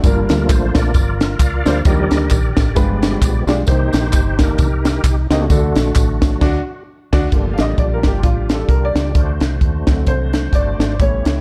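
Swung at 132 BPM in 4/4, this solemn, soulful uptempo gospel excerpt in G minor opens with a reedy tonewheel organ solo through slow rotary speaker and chorus vibrato, key click audible, over a woody upright piano, a round, foam-muted fingered bass, a crisp fusion kit with high-tuned snare and punchy kick up front in a small pumping room, and close, dry tambourine and group handclaps until 6.3 s, before a band accent at 6.4 s hands the lead to the piano at 7.3 s, all in a dark, nearly dry mix.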